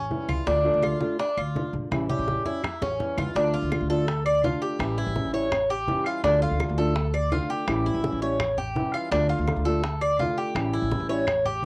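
A bright, metallic Cuban tres picks arpeggios up front over a dark, thumpy pizzicato upright bass from the very start of this danceable Cuban son and guajira excerpt in D harmonic minor, moving at 167 BPM in a straight 4/4. A thumb-plucked flamenco guitar with fresh strings fills in the accompaniment, while low-tuned congas, tight high-tuned bongos and woody claves sit in the background, with a drum fill from 1.9 to 3.4 seconds leading into the longer second section. The harmony alternates between Dm and A7 throughout, and the tres and guitar carry a cassette tape colour within a lightly reverberant home recording.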